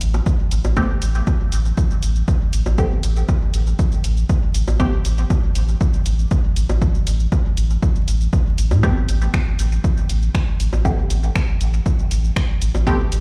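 An overdriven, punchy electronic kick sits up front alongside a round sine sub bass holding a single Am9 harmony in this meditative, deep dub techno excerpt at 119 BPM in A minor. A muted, detuned chord stab with a filter pluck, phaser, sidechain pumping and dub echo sounds from 0.0 to 4.9 seconds and returns at 8.8 seconds, while a dry analog drum machine plays finger snaps, hi-hat and shaker and layered bongos sit in the background. The whole track sounds as if played on a big sound system in a bare room, with large studio reverb and vinyl crackle.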